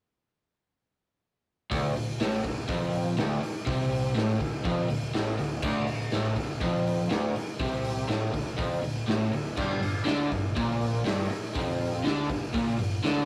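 A crunchy, overdriven electric guitar riff enters at 1.7 seconds alongside a raw garage drum kit and a fuzzed electric bass. The gritty garage rock cut plays in a straight 4/4 feel. The double-tracked, picked guitar sits up front. The drums are just as present, with a punchy kick, a medium-tuned snare, hi-hat and crash cymbal; the kit sounds saturated and dark, with a rolled-off top and a bright stone-room character. Beneath them, the picked bass carries its own fuzz and overdrive and stays in the background. The harmony rests on D minor before moving to a G5 chord at 9.6 seconds, and the whole excerpt has the rough, lightly reverberant feel of a rehearsal-room recording with saturated warmth.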